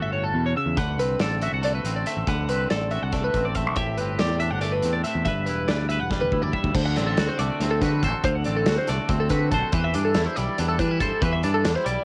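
A bright, clean twelve-string electric guitar with analog chorus sits up front, picking intricate arpeggios over a growling, overdriven fingered bass and a compressed, twangy electric guitar playing accompaniment, in a math rock and midwest emo piece in 7/8 at 281 BPM in eighths. A loose indie drum kit enters at 0.8 s with a punchy kick, dark cymbals, a pumping room, a rolled-off top and cassette tape, and a drum fill at 6.1 s leads into the second section at 6.8 s. The harmony moves through A13, D13, Am11 and G6 before settling on D7 and Cmaj9, all captured as a dry home recording on cassette with a bright, intricate mood.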